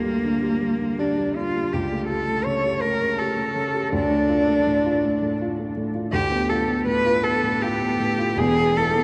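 Unfolding in a rubato triple metre, this romantic classical duo for cello and baby grand piano carries a yearning, elegiac mood through its brief span. The bowed cello sings the melody up front with vibrato and a focused, smooth top, while the dark, mellow piano accompanies intimately, its short sustain and audible action noise close at hand. A cathedral reverb with a 7.2-second decay places the pair in a vast, echoing space as the harmony moves within D minor.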